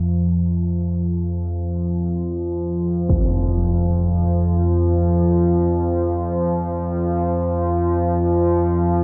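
An up-front analog drone anchors this unsettling dark ambient excerpt, sustaining from 0.0 to 9.0 s in free time with a nasal sawtooth and pulse-wave tone that evolves through pulse-width modulation and a chorus effect. Its slow attack and long release keep the sound mellow yet ominous as it sits in a low register. A very quiet bronze singing bowl plays airy, metallic arpeggios from 0.0 to 4.0 s, its bright ringing struck with a wooden striker and colored by slow beating. At 3.1 s a huge, dark impact lands briefly, softened by a low-pass filter. The whole is bathed in a huge, wet ambient reverb and carries the grain of cassette tape, giving this fragment of a longer piece a meditative but foreboding atmosphere.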